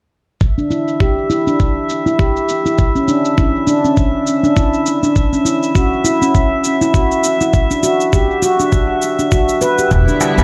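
A ringing, mellow handpan plays arpeggios up front through a filter sweep and analog delay in this earthy organic downtempo fragment in E dorian at 101 BPM, with a gritty, thumpy overdriven electronic kick and a compressed shaker driving a swung groove beneath a drifting, glassy harmonics texture, before a distant bowed string section, a woody pizzicato upright bass and a clay-shelled darbuka arrive at 9.9 seconds, all set in an echo-heavy spring-reverb mix.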